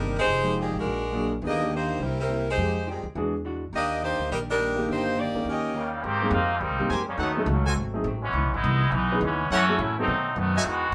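A clear saxophone section carries the melody of this energetic big band swing excerpt at 208 BPM in Eb major, over a dark hollow-body guitar in the background, a warm, long-sustaining grand piano and a woody, thumpy upright bass. After a break at 5.8 seconds, a nasal, straight-muted trombone section takes an up-front solo from 6.0 seconds, joined at 6.9 seconds by stabs from a close-miked trumpet section with light vibrato. Rich chords such as Fm9, Abmaj9 and B7b9 move beneath the swinging band, which plays live together in a moderately ambient studio room.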